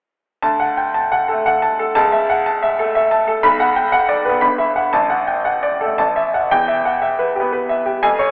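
In a rubato 3/4 at roughly 113-123 BPM, this cut from a longer classical virtuoso piano study in D major carries a heroic, brilliant mood. A solo baby grand piano, bright and up front with a short sustain, plays from 0.4 to 8.3 seconds across a range from G1 to B5, moving through D, A/C#, Bm, Em/G and D/A before touching A5 and closing on Em. A wet recital hall reverb surrounds the piano, while a telephone-like tone colours the whole recording.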